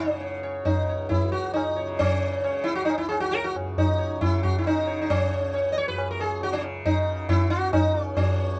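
A plectrum-plucked sitar, up front with buzzing sympathetic strings and a shimmering glow, carries a solemn, meditative melody in this short Hindustani classical excerpt in 7/4 at 136 BPM, gradually speeding up over a softly plucked tanpura drone in the low register and close, dry, high-tuned tabla with a short ring, all set in a moderate studio reverb.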